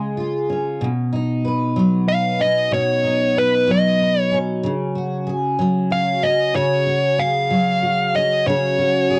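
A dark, smooth overdriven electric lead guitar enters at 2.1 s with a heartfelt, romantic melody over a double-tracked, picked steel-string acoustic guitar in this brief pop fragment at 63 BPM in 6/8, moving from C# through Badd9 to C#sus4, with both guitars up front in a dry, close, 1970s-style studio sound.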